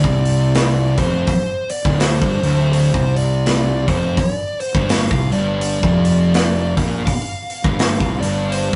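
Ominous and brooding, this short excerpt of stoner and doom metal trudges in a swung 4/4 at 83 BPM in D minor, moving from Dm to G5 at 4.2 seconds. A big acoustic rock kit sits up front with a boomy kick, medium-tuned snare and hi-hat, while two dark, picked fuzz guitars grind out the low riff in the background and a bright, growly fingered bass adds punchy overdriven weight beneath them. A distorted fuzz lead guitar carries the melody high above, all captured in a rough rehearsal-room sound with moderate reverb and a dull, rolled-off top end.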